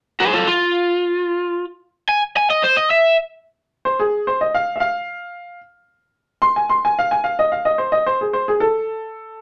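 Heard in a moderate club reverb, this swaggering, soulful blues excerpt swings at 148 BPM as a crunchy, bright overdriven electric guitar takes an up-front picked solo from 0.2 to 3.2 seconds, before a woody upright piano with short sustain steps forward to accompany from 3.9 seconds to the close.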